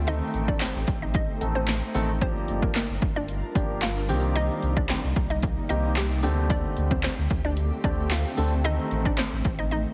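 A punchy analog drum machine leads this driving, confident dance-pop excerpt at 112 BPM in 4/4, its overdriven kick and snare up front, with a short room on the snare, handclaps and hi-hat, until the drums mute at 9.7 seconds. A deep, full sub bass with an octave layer sits equally forward, its sine and triangle tones sustained and mellow, pumping along with the sidechain. A hollow, bouncy square-wave pluck carries the melody with a detuned edge and a noise layer, dressed in chorus and tape echo. A concert grand piano adds intimate accompaniment with audible action noise and long sustain, while a shimmering, ethereal pad with a granular, wave-folded texture and octave-up sparkle holds sustained chords in the background. A distant group handclap recorded in a large room joins from 0.6 seconds, and the chords move from Adim through Gm7, Cm7 and D7sus4 back to Adim under light reverb and a heavily compressed radio sound.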